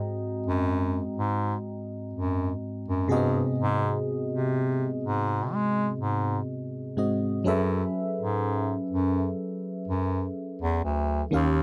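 A glassy FM electric piano opens this slow contemporary R&B passage at 62 BPM in 4/4, its bell-like attack and chorus giving the chords a shimmering, full-bodied sound over a light noise layer. Half a second in, a clear bass clarinet enters in a classical style, carrying the bass line up front as a solo voice. The harmony rests on G#7 before shifting to F#m11 at 7.5 seconds, where the same section repeats. A gentle swing on the sixteenths and a light reverb with small-room ambience give the music an intimate, sensual feel full of longing. Taken from a longer piece, it runs to about 11.6 seconds.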